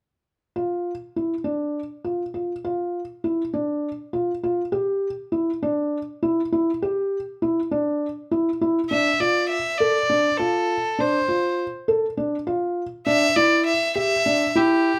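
Contemporary instrumental chamber music in 7/8, this fragment of a longer piece moves at 201 BPM counted in eighths with a straight, hypnotic and pensive feel, tuned to A4 = 442 Hz. A felt-muted upright piano opens at 0.6 seconds with arpeggios between D4 and A4. It sits up front with a dark, intimate tone where thick felt softens each note and the action noise stays audible. At 8.9 seconds a single bowed violin enters up front with the melody, ranging from G4 to E5 in a pure, floating voice with a gentle attack and airy bow. The harmony alternates between Dm and Em7 in both halves, and the piano drops out at 14.9 seconds as the violin carries on to the end. A moderate studio reverb gives the small ensemble a modest sense of room.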